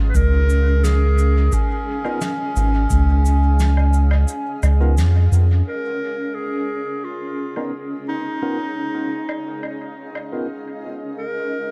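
Peaceful and spacious, this ambient dub excerpt moves at 87 BPM in a straight 4/4, centred in Db major and tuned slightly sharp to A4 = 445 Hz. A cloudy, evolving granular pad holds sustained chords throughout, moving from Dbadd9 to Db69 at 5.7 seconds, while a clear, smooth-topped clarinet carries the solo melody in a classical style, trailed by dub echo. Underneath, a soft, round sub bass sits up front only until 5.6 seconds, and an overdriven analog kick thumps until 3.0 seconds, recorded in a small room. Brushed acoustic percussion of cabasa, a high-tuned snare and woodblock ticks along with dub echo, and a barky tine electric piano adds tremolo stabs in the background from 2.0 seconds, its low-pass filter sweeping through the second half. The dark production is bathed in studio reverb, with a brief band accent just before the shift into the new section.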